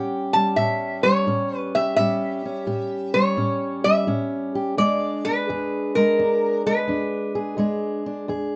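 A swung 4/4 groove at 86 BPM, with a 68% swing on the eighth notes, drives this short, swaggering and rollicking piece of acoustic country blues, cut from a longer performance. The lap resonator guitar carries the melody from 0.0 to 8.0 seconds, played with slide and fingerpicks, and its metallic, nasal voice sits up front between A#4 and A5. Beneath it, a fingerpicked steel-string acoustic guitar supplies the accompaniment from E2 up to G#4, sounding dark and close, with audible finger squeak and a concert-instrument body. The harmony rests on A7 before moving to E7 at 4.8 seconds, and the accompanying guitar rings on alone briefly until 8.6 seconds. Close, detailed microphones and very little reverb give both instruments an intimate, present sound.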